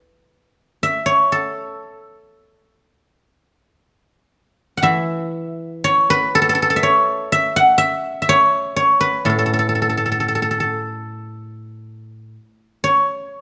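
A solo guzheng, played with fingerpicks, opens this serene, pastoral piece of Chinese traditional music, its silvery, ringing tone placed up front across a range from A2 to F#5. The playing moves freely around 60 BPM in 2/4 with rubato, uneven beats in the A gong mode, a brief opening phrase giving way at 3.3 seconds to a longer passage that runs to the end of the excerpt. Close, detailed microphones and light reverb keep the acoustic instrument intimate and clear.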